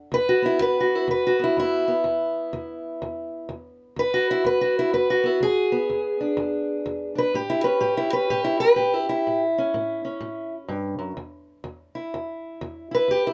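A swung 4/4 feel drives this swaggering, rollicking stretch of acoustic country blues, cut from a longer piece, where a lone fingerpicked steel-string parlour guitar, dark and boxy and placed up front under close, detailed microphones with light reverb, moves from E7 to A7 at 7.3 seconds before settling on E5 at 11.2 seconds.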